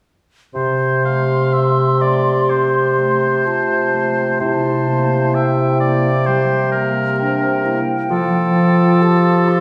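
Lyrical and warm, this slow romantic orchestral movement in F major at 64 BPM unfolds with rubato as a bright, ringing, thumb-plucked concert harp plays arpeggios up front alongside a soft-attacked bassoon accompaniment, while a clear oboe with light vibrato, a pure, tongued concert flute with vibrato, and a close-miked clarinet sitting in the background weave second lines from about 0.5 seconds, set in the lush reverb of a concert hall as the harmony moves from F over C to C7 and settles on F at 8.1 seconds.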